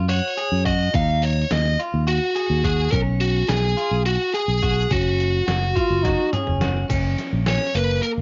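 Progressive instrumental band music in a driving, intricate 7/8, cut from a longer piece. A clean, picked electric guitar with a cassette-tape tint plays arpeggios under an overdriven, biting lead guitar melody, backed by a round, up-front fingered bass and a gritty, pitched-down trip hop sampler-style drum kit with a thumpy kick. A punchy trombone with light vibrato adds a brief second line from 5.5 seconds, and after a drum fill the lead guitar breaks into a solo at 6.9 seconds as a very quiet, grainy tube shaker joins, all in a dulled home cassette recording with light reverb.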